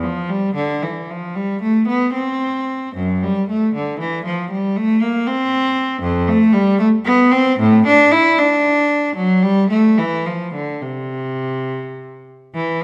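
In 6/8 with rubato, the dotted-quarter pulse moving between 67 and 81 BPM, this dance-like, radiant baroque-style suite movement in C major features a single bowed solo cello, up front and played in period style with a reedy gut-string tone and light vibrato across its range from F2 to E4, set in a moderate recital-hall reverb for a 12.8-second excerpt cut from a longer piece.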